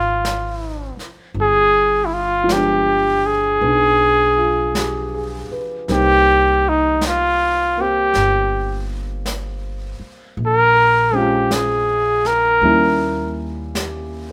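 A tender, romantic jazz ballad moves at a slow 53 BPM in 4/4 with a gentle swing, and this excerpt is cut from a longer piece. A breathy, mellow trumpet carries the melody up front, its scooped notes and smooth top giving the line an intimate, sighing quality before it falls silent at 13.4 seconds. Beneath it, a dark concert grand piano supplies mellow accompaniment with a deep bass register, while a woody pizzicato upright bass anchors the low end. A jazz kit played with brushes enters at 0.2 seconds, its brushed snare and hi-hat sounding like a small room and sitting softly at the back of the mix. The harmony opens on a rootless Dbmaj9 and drifts through G7b9, Cm7 and Bbm9 before landing on Eb7b9. Light reverb lends the whole group a soft, late-night glow.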